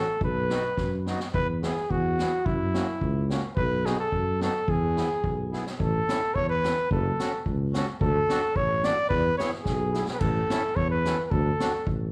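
A clear, close-miked flugelhorn leads this bouncy, jolly alpine folk dance-band tune, carrying the melody up front in a classical style at 108 BPM in a straight 2/4. Beneath it, a reedy, dark accordion with a smooth, single-reed dry tuning supplies the accompaniment, and both horn and accordion are dressed in plate reverb and slapback echo. A mellow tuba with light vibrato holds the bass, also up front in a classical manner, while an acoustic street-band kit, recorded in a small room with a boomy kick, high-tuned snare, hi-hat and crash, sits mid-forward with a rolled-off top and adds fills at 0.8 s, 5.5 s and 9.9 s. The music starts in E major and moves to A major at 5.8 s, where the harmony turns through A, F#m, D and E. Heard as a live gig through the venue's PA with light club reverb, this short cut from a longer piece has a cheerful feel.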